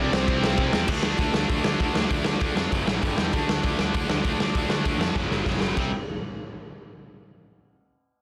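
A bluesy overdriven lead guitar flashes a brief melodic phrase at the very start alongside a faint, double-tracked high-gain guitar, both vanishing within the first second as two bright, picked distorted guitars settle into driving riffs over a punchy, fuzzed-out electric bass. A raw garage drum kit sits up front with a punchy kick, medium-tuned snare, hi-hat, ride and crash, its dark, rolled-off top ringing in a bright stone room, and it tears into a fill at 5.2 seconds. This rowdy, rebellious punk rock fragment moves through power chords like D5, F#5 and G5 in a dense, heavily limited mix with little reverb, cut from a longer piece.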